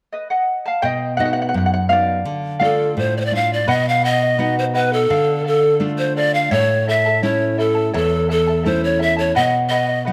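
Melancholic and earthy, this short excerpt of Andean folk moves at 84 BPM in a straight 2/4, opening with a mellow, shimmering fingerpicked charango whose double strings carry the accompaniment before a full-bodied nylon-string guitar joins at 0.8 seconds, its deep classical tone up front with audible finger squeak. At 2.6 seconds a breathy, reedy bamboo pan flute takes the melody with soft attacks, a touch of chiff and gentle vibrato, sitting close in the mix. A moderate recital hall reverb gives the ensemble a sense of space as the chords shift among B, Dm and A.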